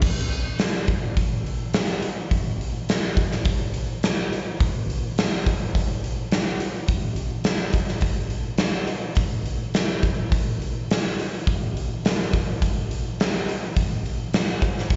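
A huge, up-front arena drum kit drives this aggressive, heavy rock excerpt at 105 BPM in a straight 4/4 from 0.0 to 15.0 s, its punchy kick, medium-tuned snare, hi-hat and bright crash cymbal carrying a hall-like acoustic character, all heard as a live gig through the venue's PA with moderate club reverb and a muffled top end that stops entirely above 7.8 kHz.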